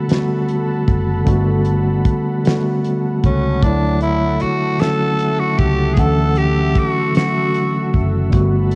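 Tender and intimate, this excerpt of slow 6/8 R&B in D major at 51 BPM moves from Gmaj9 to Dmaj9 as a mellow, clean tine electric piano and a smooth, detuned sawtooth pad with chorus hold the harmony over a dry, damped 70s drum kit with a fat snare, a tight kick and a cassette tape tint, joined at 0.9 s by a dark, round, foam-muted fingered electric bass, before a raspy, growling tenor saxophone with light vibrato carries the melody from 3.3 s to 8.0 s, the whole mix sitting in studio reverb with a homespun cassette sound.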